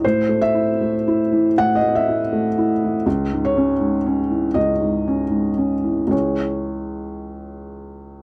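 Wistful and melancholic, this brief excerpt of neoclassical minimalist piano in C# minor drifts in rubato 4/4 around 73-81 BPM, as a solo felt-muted upright piano, soft, intimate and boxy with audible action noise, plays up front in a dry, close 1970s-style studio sound, moving from A5 to C#m at 3.0 seconds.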